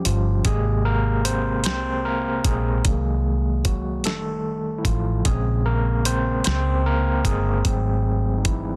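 An overdriven tine electric piano opens at 0.0 s with a barky, gritty tone and fast tremolo through a combo amp, carrying a solo over jazz-tinged chords in this warm, intimate slow six-eight R&B excerpt. From 0.1 s a dark, round, foam-muted fingered electric bass and a dusty sampler-style drum kit with a thumpy kick, medium-tuned snare and hi-hat settle beneath it, the kit compressed, gritty and tape-warm. Piano and drums sit up front in a digital ambience, and the whole is a dense, heavily limited modern master.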